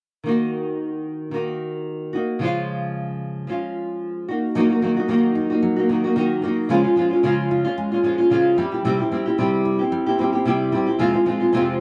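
Sunny and heartfelt, this pop fragment opens at 0.2 seconds with a small, up-front nylon-string guitar, fingerpicked and double-tracked, carrying the accompaniment with a gentle sixteenth-note swing. At 4.6 seconds a full-bodied steel-string dreadnought joins with fingerpicked arpeggios, sitting lower in the mix with audible finger squeak, as the harmony moves from E-flat minor and D-flat through C to F minor. The sound is dry and close, in the manner of a 1970s studio, touched by light reverb.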